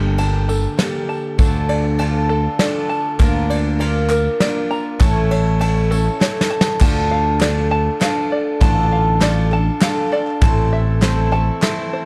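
Yearning and wistful, this indie folk excerpt moves in a straight 3/4 at 100 BPM with a building arrangement, settling into D minor at 6.8 s, as a shimmering, octave-doubled twelve-string guitar sits up front with plunky, twangy banjo arpeggios, a punchy fingered electric bass, and a soft brush kit leading through a drum fill into the second section, while a very quiet, dark fingerpicked steel-string guitar appears only briefly at the start, a jingly tambourine sounds distant in a large room until 6.6 s, and crisp, close group handclaps join at 3.2 s, all under light reverb in a dark, warm production.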